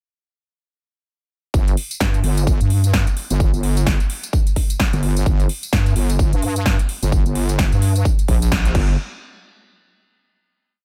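A punchy four-on-the-floor electronic kick drives this swaggering, gritty bass house piece at 129 BPM in G minor, with a 16th-note swing and a programmed backbeat of snare, metallic closed and open hats, tambourine and crash from the layered big-room kit, both drum parts set in a small room from 1.5 seconds. Up front, a heavy, detuned square-and-sine wobble bass moves through saturated, compressed and chorused phrases whose wobble speed keeps changing, with sidechain pumping through the drop. A band accent lands at 8.5 seconds before a final hit rings out from 9.0 seconds in a digital ambience.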